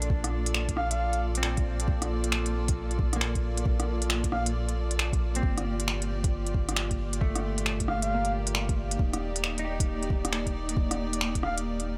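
Light reverb and a digital ambience wrap this nocturnal, wistful future garage excerpt at 135 BPM in 4/4, its sixteenths swung at 64% as Bbmaj7 moves to Gm7 at 5.4 seconds and Ebmaj7 at 9.0 seconds. A soft electronic kick and a crisp, up-front kit of finger snaps, hi-hat and rim click play alongside a round, sine-like sub bass, while a dark, bowed chamber string section holds sul tasto chords. A clean, compressed semi-hollow guitar sits in the background with analog chorus and dub echo, and a breathy, flute-like synth lead drifts in on brief F5 notes, first at 0.8 seconds, through chorus and tape echo, with sidechain pumping on the bass, strings and guitar.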